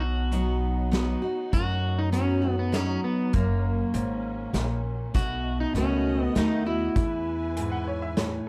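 An easygoing, down-home honky-tonk and classic country tune in 3/4 at 99 BPM, this short excerpt moves through B, F#, B7 and E over about eight and a half seconds. A twangy electric guitar at the edge of break-up carries the melody up front, its tone touched with vibrato, while a bright, full-bodied picked dreadnought acoustic guitar fills in the accompaniment beneath it. An upright bass, thumpy and woody with pizzicato steel strings, holds the low end, and an unplugged drum kit played with bundle sticks enters at 0.3 seconds with hi-hat, punchy kick and a medium-tuned snare in a studio room. A rich symphonic string section sits further back with smooth, bowed sustained chords, and a brilliant, slightly detuned upright piano with audible action noise slips in a second line at 7.6 seconds. The production is dark and warm with light reverb.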